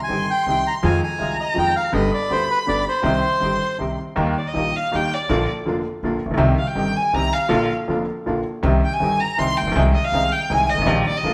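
A dramatic, sultry tango in 3/4 at 162 BPM with a rubato feel, moving from C minor to Eb major at 4.2 s, heard in a cut from a longer piece played live in one stone room with a wet reverb. A reedy, dark bandoneon carries the melody up front until 3.8 s, while a distant, expressive violin with vibrato and portamento plays a second line and takes a solo from 4.2 s. Beneath them, a clear, worn baby grand piano with audible action noise, an upright bass plucked on woody gut strings, and a boxy second bandoneon stabbing in the background fill out the accompaniment.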